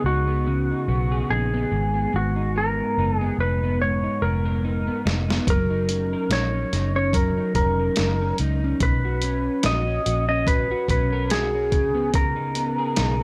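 A gently swung 72 BPM groove in 4/4 and F# major carries this hazy, laid-back indie and bedroom pop piece, where a dark, round, punchy foam-muted electric bass and a slightly broken-up, twangy electric guitar with analog chorus and warbly pitch drift sit up front from the start; a bright, clean lap steel slide melody with lush chorus enters at 0.1 seconds, and a gritty, tape-warm, pitched-down, sampler-style trip hop kit with a thumpy kick and medium-tuned snare joins at 5.1 seconds, the whole mix wrapped in light reverb as the chords move from C#9sus4 through G#madd9 and Bsus2 to C#sus2.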